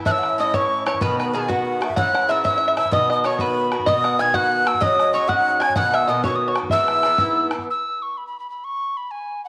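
In a 6/8 Celtic jig feel, this cheerful, rollicking folk fragment puts a hollow, chiffy tin whistle up front on the melody, joined by a breathy, tongued wooden flute and a twangy, fingerpicked banjo on a second line, over metallic double-string Irish bouzouki accompaniment and a damped, band-limited bodhran, all bathed in wet spring reverb until the others drop away near 7.7 seconds and the whistle carries on alone to 9.5 seconds.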